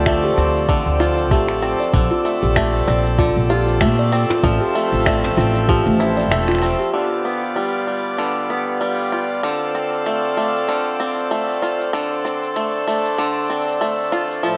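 A gently swung 4/4 groove opens this delicate, playful folktronica excerpt, with a soft electronic kick and a vintage brush kit of cabasa, finger snaps and toms under a breathing, reedy hand-pumped harmonium and twangy, fingerpicked banjo arpeggios echoing through analog delay, while a growly upright bass and a hollow, ringing kalimba second line add weight and a mellow glow until the kick stops at 5.8 seconds and the bass at 6.7 seconds, after which a filter sweep shades the drums from 6.9 seconds, all bathed in a dreamy, reverb-soaked plate.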